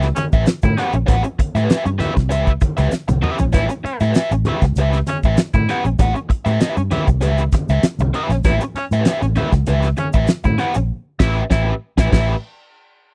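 Funk with a gritty feel, this cut from a longer piece rides on a damped 1970s drum kit with a fat snare and tight kick, joined up front by a round, foam-muted fingered electric bass and a crunchy overdriven guitar run through wah over an A9 chord. A breathy, whispered baritone saxophone with vibrato carries an intimate second line from 0.2 s, while low-tuned congas sit distant in a large room and a grainy, bright tube shaker stays in the background. A drum fill lands at 2.9 s and a band accent arrives at 10.9 s, captured in a dry, close 1970s-style studio sound.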